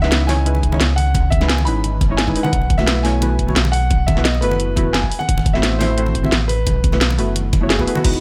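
A dreamy liquid drum and bass drop opens with a short-sustained grand piano melody carrying delay over detuned, warbling chord stabs with chorus, a deep sine sub bass, and an up-front kit of cracking snare, bright hats, ride and crash. Distant congas played with hard hands sit in the background from 0.1 seconds, and a knocking electronic kick joins at 0.6 seconds. The chords move from C#m9 through B7sus4 and Am6 in a dry mix cut from a longer piece.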